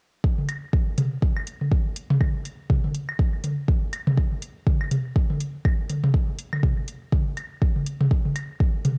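A deep, overdriven electronic kick opens this quirky, cool fragment of minimal techno at 0.2 s, sitting up front with the grit of cassette tape and the air of a large room. Overdriven analog toms and claves join at 0.4 s, also close and forward with a small-room character, while faint metallic analog hi-hats slip in at 0.5 s over a swung sixteenth-note feel. The whole home-recorded cassette sound is wrapped in a digital ambience.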